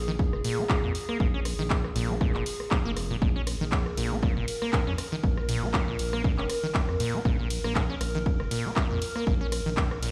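Driving acid house at 119 BPM with a 55% swing on the sixteenths gives this trippy excerpt a loose, rolling gait, anchored by a punchy, up-front electronic kick and a tape-tinged analog drum machine supplying handclaps, hi-hat, ride cymbal and rim click. Set in Bb minor pentatonic, the centrepiece is a squelchy, resonant sawtooth acid bass riff with a fast attack and decaying notes, pushed forward with overdrive and delay and shaped by a filter sweep. Beneath it, a round, deep analog bass with a dark, evolving ring-modulated edge holds sustained low notes and breathes with sidechain pumping. A warbling, nostalgic lo-fi pad of detuned square and triangle tones with a sub octave swells with a slow attack, holding mellow sustained chords bathed in chorus and its own reverb, also breathing with sidechain pumping. The whole mix sits in light digital ambience, heard as if through a big sound system in a bare stone room, giving the hypnotic groove a hard, reverberant space.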